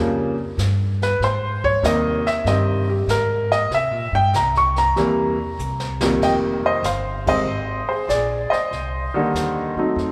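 A moderate church reverb surrounds this short cut from a longer jazz piano trio performance, lending a moody, late-night air to its swung groove. A warm, intimate concert grand sits up front carrying the melody, its deep bass register and audible action noise giving it a natural presence, and the opening stretch is framed as a piano solo. The pizzicato upright bass sounds woody and steel-strung beneath it, while the brush kit, entering at 0.6 seconds, stays distant and roomy with dark cymbals, a medium-tuned snare and a boomy kick. A drum fill at 5.6 seconds leads into a second section, where the trio hits a band accent at 7.2 seconds. The harmony moves through rich seventh and extended chords, including a rootless voicing at the start, that settle into minor colours.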